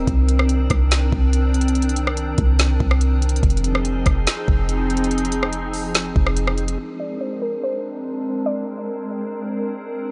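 Floating and blissful, this atmospheric cloud-rap excerpt in half-time rests on a glassy, ethereal FM pad whose chorused, reverb-washed chords pump against the beat, move through Cm9, Fm7 and Bb9, and pass through a filter sweep from 6.8 seconds. A deep, round 808-style bass and a smooth R&B kit with a soft kick, woody snare and rim click carry the groove until that point. At 7.0 seconds a quiet, mallet-like pluck, detuned and percussive with chorus and delay, adds a brief melody over the lingering pad.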